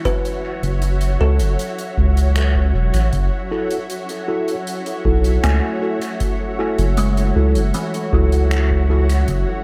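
Ambient dub at 78 BPM in F# minor, this deep, meditative excerpt rests on a single F#m7 chord, with a blurred, evolving granular cloud pad and a woody, thumbnail-plucked kalimba arpeggiating through tape echo from the first moment. A round, up-front sub bass with tube saturation anchors the groove beneath a deep analog kick set in the background and a soft-mallet kit of finger snaps and hi-hat trailing dub echo. At 3.5 seconds a mellow tine electric piano enters with stabs carrying vintage 12-bit sampler grit and dub echo, all framed by light reverb and studio ambience.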